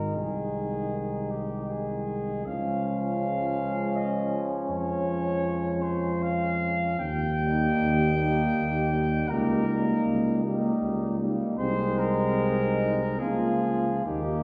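Lyrical and warm, this classical, hymn-like brass band passage in Ab major moves in a rubato 3/4 at 67-82 BPM, with a distant-sounding cornet carrying the melody up front over a mellow flugelhorn second line with light vibrato, a brilliant, vintage-toned trombone and a clear, soft-attacked euphonium accompanying in the background, and a smooth-topped tuba anchoring the bass up front, all five playing throughout the 14.4-second extract, which is cut from a longer piece, while a wet recital hall reverb places the listener further back in the room.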